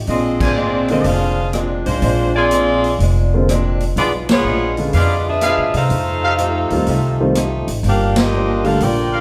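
A mellow saxophone section carries the melody up front in this brassy, swinging big band jazz excerpt, its vibrato-laced tone smooth and soft-edged, while a clear, tight trumpet section adds stabs. Beneath them sit a woody pizzicato upright bass, a present concert grand piano with audible action noise, a boxy picked acoustic guitar in the background, and a drum kit with dark cymbals and a punchy kick, all moving through chords from Bb9 to Gm7. The band hits accents at 0.3, 4.2 and 8.1 seconds, and a wet large-studio reverb places the ensemble further back in the room.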